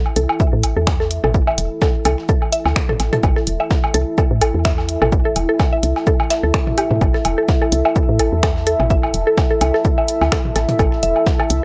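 Hypnotic and cool, this minimal techno excerpt runs at 127 BPM in 4/4 with a light 16th-note swing, built on an up-front, punchy electronic kick, a tape-warm analog drum machine of finger snaps and hi-hat, a gritty sampler-style kit of hi-hat, shaker and filtered snare tucked in the background, small-room electronic woodblock and toms, a round, woody FM bass pumping beneath, a percussive mallet-like pluck riff with chorus and analog delay, and a deep, moody detuned pad sustaining with chorus and built-in reverb over an A5 chord, all in a dry, hardware-rough mix.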